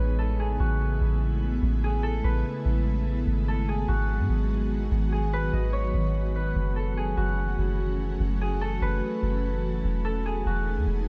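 Ethereal and melancholic, this excerpt of atmospheric cloud-rap moves at 146 BPM in a half-time feel, with a warm, ringing concert harp carrying the melody through a low-pass filter and digital delay over an airy, warbling pad of detuned, vintage-sounding chords softened by chorus and reverb. Underneath, a soft 808-style bass sits up front with a deep, round, decaying tone. The three parts play together throughout the 11.1 seconds in a small room, drifting through Amaj9, G#m7, F#m7 and Emaj7.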